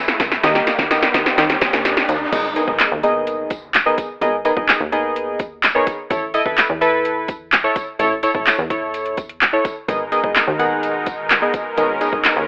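A straight 4/4 pulse at 127 BPM drives this energetic dance-pop cut in G# minor, where a build-up with a drum fill, riser and filter sweep gives way at 2.3 seconds to a drop marked by a background impact, as an overdriven, up-front deep house kit with deep kick, punchy snare, metallic hats, handclaps and crash pushes alongside a funky, plucky analog bass, chorused warm analog keys that pump and evolve under a low-pass filter, a smooth detuned supersaw holding background chords that returns at 9.9 seconds, and a very quiet, jingly tambourine, all through light reverb in a rough home-demo mix with a telephone-like tone.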